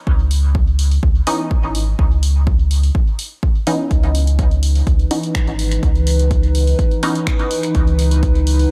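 An up-front, round sub bass and a punchy electronic kick open this hazy, hypnotic dub techno excerpt at 125 BPM in C# minor, the bass pumping under a sidechain on a C#m9 chord, while an analog drum machine adds finger snaps and hi-hat trailing dub echo. At 1.3 seconds a muted, detuned sawtooth chord stab with a filter pluck enters, drenched in chorus, phaser and dub echo, and from 4.6 seconds a moody, dark analog pad with a slow attack and long release swells into the pumping mix. The drums carry a small-room character within a digital ambience.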